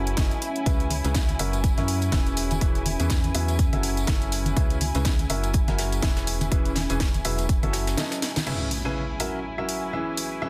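Piano house with a bittersweet, energetic mood, built on a swung groove where a clear, woody upright piano plays a riff through a low-pass filter and digital delay, over a hollow, organ-like FM bass, a deep detuned pad with chorus and reverb, and veiled con sordino violins carrying sustained chords with vintage sampler grit, all breathing with sidechain pumping. A punchy, up-front electronic kick drives a house kit with a cracking snare, joined by a very quiet brushed kit and close tambourine and congas in the background. The bass drops out at 8 seconds, and after a drum fill at 8.2 seconds and a band accent, an electronic impact rings from 8.5 seconds over the closing chords of this dense, heavily limited excerpt.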